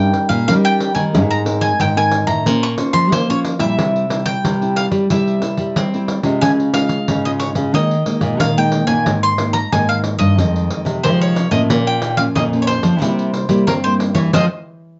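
A bright, double-strung bowl-back mandolin carries the picked melody up front through this bittersweet, yearning samba and choro excerpt at 91 BPM, moving over chords from Abadd9 and Bbmadd9 through Fm7 and C7 before landing on Fm. One nylon-string guitar fingerpicks a classical accompaniment close up, with fresh strings and audible finger squeak, while a second, smaller-sounding nylon-string guitar fingerpicks the bass line. A jingly pandeiro played with soft hands enters at 0.1 s, and the band hits a closing accent at 14.3 s in a moderate studio reverb with a gently rolled-off top end.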